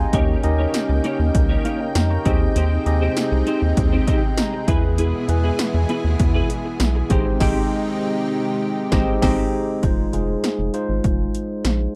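A dry, close 1970s-style studio sound frames this uplifting, nostalgic 1980s-style pop at 99 BPM in Ab major: up-front electronic drums with a punchy kick and gated snare join a rubbery square-wave bass beneath a clean tine electric piano with subtle chorus, a thick, detuned sawtooth pad and a twangy twelve-string electric guitar riff with chorus and slapback echo, while the electric piano adds a fill at 3.8 seconds, the band hits an accent from 7.4 seconds, and a new section begins at 9.8 seconds.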